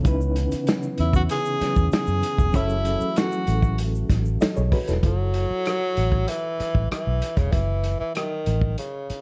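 Over a straight 4/4 groove at 96 BPM, a muffled vintage drum kit and a round, foam-muted fingered electric bass sit up front in this lush, cinematic 1970s-style soul excerpt in F# dorian, joined at the start by a reedy electric piano with fast tremolo, mellow French horn chords in the background and a grainy egg shaker, all moving from C#m9 to F#m7. A breathy, whispered tenor saxophone carries the smooth melody from 1.0 s, while a distant horn section adds brief stabs with analog delay during a band accent from 2.5 s. The piano, horns and shaker stop around 5.0 s, leaving saxophone, bass and drums in a dark, small-room sound.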